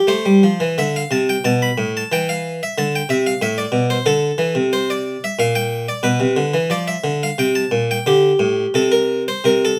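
A solo harpsichord with a round, airy, Flemish-style voice on a single set of strings sits up front in this flowing, serene baroque-style suite movement in 3/4 at 90 BPM, played with rubato and uneven beats across a range from A2 to B5, moving from F through C/E and Amadd9 toward Bdim and Am7 in a brief passage cut from a longer piece, captured by close, detailed microphones with light reverb.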